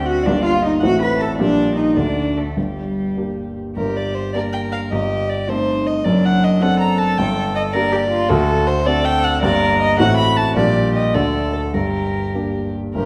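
A dark, mellow grand piano sits up front in this restless, urgent classical-period movement for piano trio, set in 6/8 with a rubato feel. Above it, a single violin carries the melody with a pure, floating sul tasto tone and a smooth top, while a distant bowed cello, soft in attack, shapes a second line from 0.1 s. The opening phrase returns at 3.8 s, and a wet recital-hall reverb wraps the trio in this brief cut from a longer piece.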